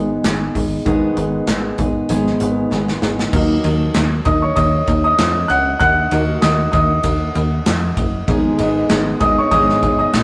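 A rough rehearsal-room recording bathed in stone-room reverb opens this driving, dramatic piano-driven pop excerpt in Eb minor at 97 BPM, with a light swing on the sixteenths. A clear, intimate baby grand with audible action noise carries the harmony and takes a solo from 3.3 seconds, after a drum fill from the acoustic studio kit with its punchy kick, handclaps and cymbals. Underneath, a plucky, funky analog bass with a ring-modulated sawtooth edge sits up front, while a full-bodied, picked jumbo acoustic guitar plays a riff that drops out at 3.8 seconds and returns at 8.3 seconds.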